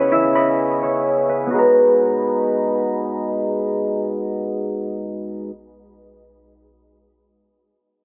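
A thumb-plucked concert harp, a reedy pedal harmonium and a clean electric guitar all sound from the first moment of this ethereal, melancholic hip hop excerpt. It moves at 128 BPM in 4/4 with a half-time feel, in G# minor and tuned to A4 = 437 Hz. Up front, the harmonium holds breathing, smooth sustained chords that move from C#m9 to G#m9 at 1.5 seconds, while a filter sweep shapes the opening 1.5 seconds. The harp carries a ringing, acoustic melody between B4 and E5, softened by a low-pass filter and tape echo, and falls away at 3.6 seconds. Beneath it, the fingered electric guitar plays dark, subdued arpeggios through its own low-pass filter and tape echo. A moderate shimmer reverb with a long tail, a faint mains hum and an overall low-pass tone wrap the music in a hazy glow.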